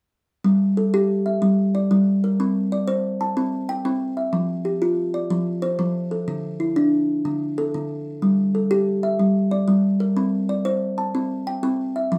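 A woody, hollow-bodied kalimba sits up front, its ringing thumb-plucked arpeggios spanning D3 to A5 from 0.4 to 12.2 seconds in this hypnotic, trance-like excerpt of southern African traditional music. The piece moves at 123 BPM in a straight 12/8 in G dorian, cycling through G5, C5, F5 and D5 chords. Close, detailed microphones capture the airy instrument in a small room with moderate reverb.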